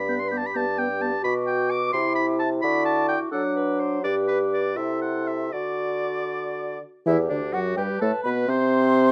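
Cheerful and spirited, this passage, cut from a longer classical-period movement for wind quintet, moves in 6/8 at 76-88 BPM counted in dotted quarters, in G major, with a rubato feel. The silver concert flute carries the melody from 0.1 s, its pure, hollow metal tone shaded with vibrato and tongued notes. The oboe sings a clear second line with light vibrato, sitting up front, and the bassoon, also up front and mellow, anchors the bass. The French horn adds accompaniment with a soft attack and a smooth top, while the clarinet fills in very quietly, sounding warm, distant and roomy. The harmony moves from Gadd9 through Bm, C and D back to G, and a new section begins at 7.1 s, resting on G before the chords fall away at 8.5 s. Light reverb and close, detailed microphones keep each instrument distinct.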